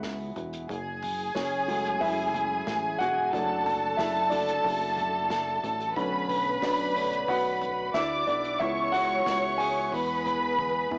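A straight 4/4 pulse at 91 BPM carries this dramatic, bittersweet piano-driven pop excerpt in F# minor, where a woody, up-front upright piano solos over a mellow, chorused synth bass and a punchy, airy acoustic kit played with bundle sticks, a lush bowed violin section with smooth vibrato enters at 0.7 seconds through tape echo, a drum fill arrives at 10.6 seconds, and the piano, drums and strings carry a cassette tape grain that, with moderate reverb, gives the whole a homespun, small-speaker sound.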